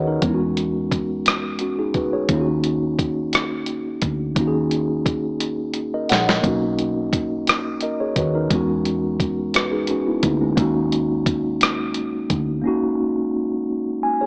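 Worn cassette tape with a warbly pitch drift and a small-speaker sound colours this short cut from a slow, tender six-eight R&B groove, set in light digital ambience. A mellow, clean tine electric piano sits up front over a dark, round, foam-muted fingered electric bass, while a gritty, compressed sampler-style soul kit with a thumpy kick, medium-tuned snare, rim click and hi-hat sounds re-recorded in a small room. The drums play a fill at 5.4 seconds as the chords move between E69, D#m7 and Bmaj9, and after the bass stops at 12.6 seconds the electric piano closes with its own fill at 13.7 seconds.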